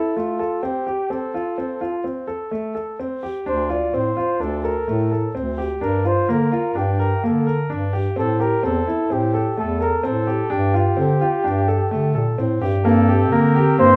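Set in a restless, urgent 5/4 with a straight feel, this short contemporary chamber excerpt pairs a breathy, vibrato-laden flugelhorn melody in jazz style with intimate, boxy concert grand piano arpeggios carrying audible action noise, joined at 3.5 seconds by a subtoned bass clarinet and at 12.8 seconds by a punchy, classical-style clarinet line, all heard from further back in a reverberant studio as the harmony moves from Am7 through Dm7, Gm7 and G9sus4 to rest on Gm.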